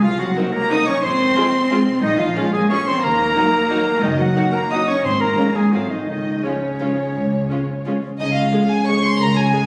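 Classical orchestral ballroom waltz in Db major, elegant and sweeping, moving in a rubato 3/4 at 160-197 BPM and captured on a phone within a moderate scoring-stage reverb as a short cut from a longer piece. A warm, intimate violin section carries the melody with light vibrato over woody second violins, a bright clarinet that stops at 7.9 s, an airy, crisp-edged silver flute, rich cellos and even, bowed double basses, while focused violas and a tight, dark French horn section sit in the background alongside a very quiet, ringing harp. Timpani with medium mallets sound briefly and dry at 5.1 s, and the harmony settles onto Db at 6.1 s.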